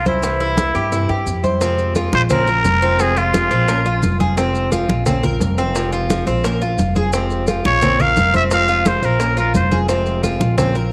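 A nasal, raspy trumpet with a straight mute carries the jazz-style melody up front with light vibrato, dropping out at 4.2 seconds and returning at 7.7 seconds, in this nostalgic, sultry Cuban son and guajira cut from a longer piece. Beneath it, a metallic, double-strung tres picks arpeggios, a woody, growly pizzicato upright bass thumps, and a fingerpicked flamenco guitar adds warm accompaniment. Thick-skinned congas sit close and dry, with tight, very quiet bongos and grainy maracas in the background; a drum fill leads into a section that rocks between Fm and Bbmadd9 under light studio reverb.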